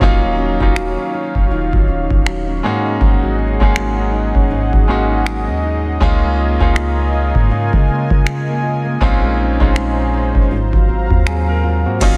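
Tender and smooth, this contemporary R&B excerpt moves at a relaxed 80 BPM in 4/4 with a gentle 16th-note swing, drifting through lush chords from Ebm9 to Db6 and on to Ab13. A booming analog drum machine sits up front, its deep kick, metallic hi-hat, finger snaps and crash cymbal sounding dry and tape-warm, with soft clipping giving the snare a slight grit. Beneath it, a soft 808-style bass supplies round, sine-like low notes with a fast attack that decay into darkness. A clear concert grand piano carries the accompaniment with natural tone and a deep low end, while a detuned sawtooth pad holds slow-blooming sustained chords, thickened by chorus. In the background, a full-bodied nylon-string guitar plays thumb-plucked classical arpeggios through a delay, all five parts running together from 0.0 to 12.2 seconds. The mix is dense and heavily limited, with little reverb, keeping the sound close and intimate.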